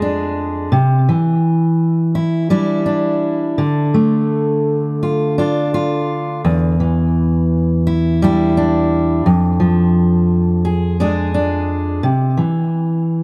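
Bathed in a moderate spring reverb, this brief pastoral folk passage cut from a longer piece features a solo fingerpicked steel-string dreadnought acoustic guitar, bright, full-bodied and up front, unfolding gently in C major at a loose, rubato 85 BPM in 4/4 as it moves through Fm6, Cadd9, Dm and Em7 before returning to Fm6 and settling on C at 12.0 seconds.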